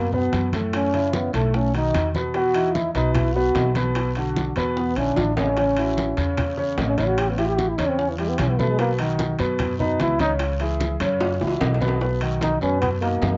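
A straight, lively 4/4 groove from congas, low-tuned bongos, raspy guiro and ringing, distant timbales drives this sunny Afro-Cuban jazz excerpt, with drum fills at 5.2 and 11.2 seconds. Up front, a breathy, whispered trombone with light vibrato solos over a deep-bassed concert grand piano and a woody, growly pizzicato upright bass. The whole mix sounds like worn, warbling old cassette tape, with dulled highs and drifting pitch under light reverb.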